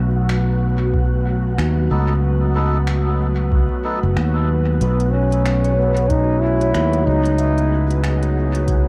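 Hazy and peaceful, this ambient dub fragment drifts at 93 BPM with a lightly swung feel in B mixolydian over a B7 chord, as a breathy, warbling pad with chorus and a wind-like noise texture sustain beneath a direct, up-front fingered electric bass. A deep, analog-toned electronic kick and crisp hi-hats with finger snaps in dub echo carry the groove, while a reedy melodica adds stabs roughened by 12-bit sampler grit from 1.9 to 4.0 seconds. A smooth solo trombone takes the melody from 4.8 seconds, joined by ringing vibraphone arpeggios through analog delay, all within small-room ambience, cassette character and vinyl crackle.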